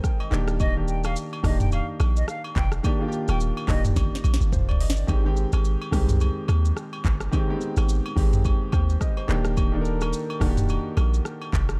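A clear, intimate grand piano with audible action noise opens this sunny, romantic afrobeats excerpt alongside an up-front electronic drum kit of deep kick, sharp snare, metallic hats, rim clicks, shaker, handclaps and toms, soon joined by acoustic agogo bells in a small room and a boomy, sine-toned 808-style bass. An airy, bright concert flute with vibrato and tape echo sings a brief, expressive melody that ends at 3.8 seconds, and the harmony moves between Ebmaj7 and Abmaj7 with a drum fill and then a piano fill at 8.4 seconds. A digital ambience surrounds the dark, warm production.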